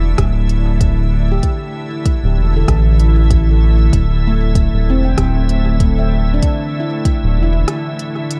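Dark, dry production frames this spacious, hazy ambient dub fragment at 96 BPM in swung 4/4 on Dsus2: a deep, round analog bass sits up front beneath a calm, organ-like pad with ensemble chorus, ringing, bright handpan arpeggios trail dub echo, and a soft electronic kick pairs with an electronic kit's crisp hi-hat and echoed rim clicks before a brief break at 7.7 seconds.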